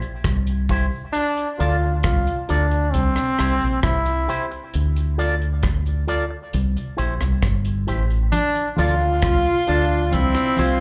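Laid-back and hypnotic, this roots reggae piece moves at 67 BPM in D minor, alternating between C and D minor chords over a dry drum kit with a tight kick, hi-hat and rim click, and a dark, round fingered dub bass sitting up front. A twangy, clean electric guitar runs through an envelope filter, while a brilliant, close-miked trombone with vibrato carries the second line, both steeped in tape and slapback echo. High-tuned congas played with soft hands slip into the background at 8.3 seconds, and a distant, roomy tenor saxophone with echo takes the melody at 8.8 seconds, the whole gig heard through the venue's PA with light club reverb.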